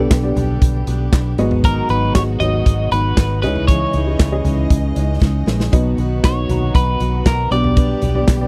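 This short excerpt of hopeful, anthemic piano-driven pop opens with nearly the full band at once: a clean, compressed twelve-string electric guitar carries the melody over a dark, woody upright piano that sounds worn and slightly detuned. At 117 BPM in a straight 4/4, a natural country drum kit sits up front from 0.1 seconds, with a punchy kick, medium-tuned snare, hi-hat, toms and handclaps, and a drum fill at 5.2 seconds. A vintage foam-muted fingered electric bass, round and amped, anchors the low end, while a jumbo steel-string acoustic guitar plays a full-bodied picked riff with audible finger squeak. In the background, a lush bowed string section holds smooth sustained chords with vibrato, and a very quiet, mellow French horn section adds a classical-style second line. The harmony moves from G/B through G#m7, C#madd9 and B before returning to G/B, all captured in a dry, close 1970s-style studio sound with little reverb.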